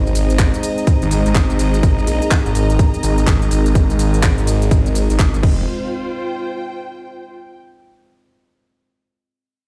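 Played back through a big sound system in a bare stone room, this gritty, aggressive cut from a longer bass house track opens on a 125 BPM drop in F minor with swung sixteenths. An up-front, tight electronic kick and a tape-warm garage kit of crisp hats, handclaps, ride, crash and shaker sound beside a swirling, saturated detuned saw bass with phaser and overdrive, while a moody, nasal analog pad with chorus pumps through chords moving from Ab to Fm and F5. Once the other parts stop at 5.7 seconds, a distant, woody chamber string section with vibrato carries on alone until 7.6 seconds.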